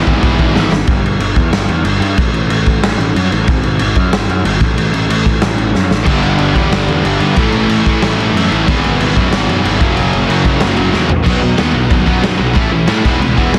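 Punk rock at 185 BPM in 4/4 with a rowdy, rebellious mood, this cut from a longer piece rides a half-time feel from 0.9 to 11.3 seconds, driven by an up-front, growly fuzz bass and a punchy, saturated garage drum kit with a medium-tuned snare, crash, and toms that drops in fills. Three picked electric guitars play riffs: a double-tracked, overdriven stack guitar and a tight, distorted one sit in the background, joined by a very quiet overdriven garage guitar; all three sound briefly at the start, then drop out until about 6.0 seconds. The dense, heavily limited mix has little reverb, and the closing section pushes through B, A and E chords.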